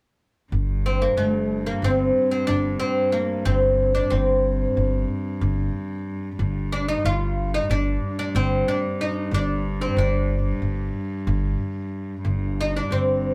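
Set in a straight 9/8 at 184 BPM counted in eighths, this soulful, longing Turkish passage in G makam Ussak, tuned to A4 = 437 Hz, opens at 0.5 s with a growly, up-front pizzicato upright bass holding low G alongside a single bowed cello drone with a reedy gut-string tone and light vibrato. At 0.9 s a bright, woody fretless oud with double strings takes the plectrum-plucked melody up front, ranging from a lowered A3 to F4. The trio sits in a moderate studio ambience heard from further back in the room, in a passage cut from a longer piece.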